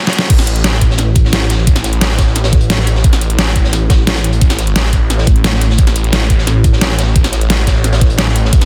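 Dense, heavily limited and nearly dry, this excerpt of dark, mechanical technical drum and bass at 175 BPM opens with a short drum fill before the drop at 0.3 seconds, where a knocking, up-front electronic kick and a layered dubstep kit with deep snare, metallic hats and crash sit over a gritty, rolled-off breakbeat kit in the background, while a thick, swirling phased detuned saw bass pumps on A1 and an aggressive, metallic FM wobble bass, colored with chorus and tube saturation, bursts in briefly from 5.3 to 5.8 seconds.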